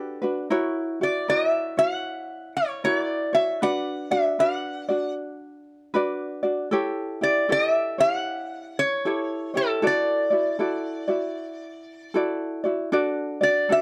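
Hawaiian music in a dreamy, languid mood, this short passage cut from a longer piece moves at an unhurried 77 BPM in 4/4 with a gentle swing on the eighth notes, set in D major. A lap resonator guitar, played with slide and fingerpicks, carries the melody from start to finish, its metallic, nasal voice sitting up front in the mix. Beneath it, a fingerpicked ukulele supplies a light accompaniment, also placed close and present, and it plays throughout the 13.8 seconds. The harmony drifts from Gmaj7 and F#7 through Bm and A7 before settling on Dadd9 and finally D at 12.9 seconds. The sound is dry and intimate, like a close 1970s-style studio recording, touched with only light reverb.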